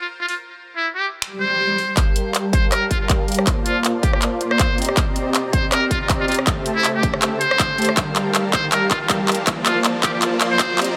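Future bass at 160 BPM in G minor, set in a half-time, lightly swung 4/4, carries a dreamy, emotional mood through this short cut from a longer piece. A buzzy, metal-muted trumpet with vibrato sings the melody from the start, pumped by sidechain and trailed by delay, over a bright-hatted, tape-warm trap kit of finger snaps, handclaps, hi-hat and rim clicks, while a background swell rises at 1.3 seconds. At 2.0 seconds a huge, lush, detuned supersaw riff enters under a sweeping low-pass filter alongside a punchy, overdriven electronic kick, driving a build-up with a drum fill and riser through Gm9, Bbmaj9, Cm7 and Am7 chords in light reverb.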